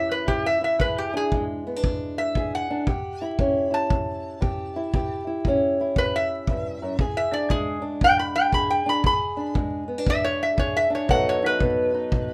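Swaggering and laid-back, this swung acoustic country blues fragment puts a metallic, nasal resonator slide guitar up front, soloing with a steel bar over a dark, woody, boxy fingerpicked ladder-braced acoustic guitar with old strings, while a punchy, roomy kick drum enters at 0.3 s and the A7, E7 and B7 changes sit in a small room's moderate reverb under a layer of vinyl crackle.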